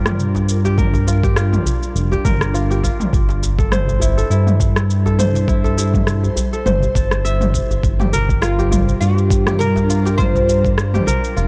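A mellow, up-front synth bass pumps beneath ringing, fingerpicked kora arpeggios with tape echo and an ethereal, phased pad in this mystical, warm organic downtempo excerpt, joined by a gritty, overdriven electronic kick, an electronic kit of rim click, shaker and toms, and a tight, cracking djembe in the background, while a woody, plectrum-plucked oud with digital delay enters at 8.4 seconds.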